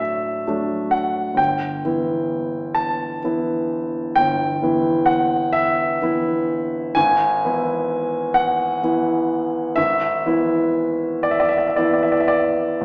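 A concert grand piano carries this tender, dreamy romantic nocturne on its own, its intimate, polished tone reaching from deep bass at G1 up to A5 with long sustain and audible action noise. Moving in a rubato 12/8 at 43 BPM by the dotted quarter, this brief excerpt passes from D to Em/G at 1.4 seconds and on to E/G# at 7.0 seconds before it breaks off at 12.8 seconds. The instrument sounds present and up front, yet a wet recital hall reverb with a 1.6-second decay places the listener further back in the room, through a small-speaker sound.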